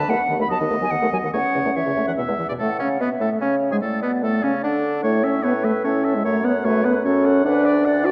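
An up-front French horn with vibrato plays in the accompaniment of this lively, graceful excerpt from a quick classical-period wind quintet movement in A major at 148 BPM in 3/4, where a pure, silvery flute with a soft attack carries the melody, a clear oboe adds a second line, a very quiet, mellow clarinet fills in beneath, and a distant, roomy bassoon supplies the bass, the quintet sitting in a wet concert-hall reverb with a dark production.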